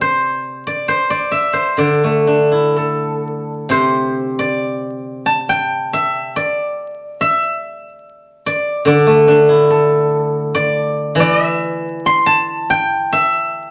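A silvery steel-string zither, played with fingerpicks, carries this short solo cut from a longer Chinese traditional piece, its ringing acoustic tone placed up front across a range from C3 to C6. The mood is pastoral and flowing, with a free rubato feel over a 4/4 metre, and the opening passage gives way to a new section at 3.7 seconds that runs to the end at 13.7 seconds. A moderate studio reverb surrounds the zither, and vinyl crackle sits beneath it.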